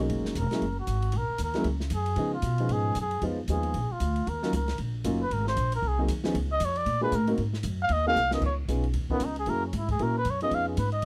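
Swinging briskly in 4/4, this relaxed small-group bop cut puts a veiled, cup-muted trumpet soloing up front with light vibrato over woody pizzicato upright bass, an intimate baby grand piano accompanying with audible action noise, and an airy drum kit with dark cymbals and a boomy kick that plays a fill at 8.2 seconds, all captured dry and close in a small room with a 1970s studio character.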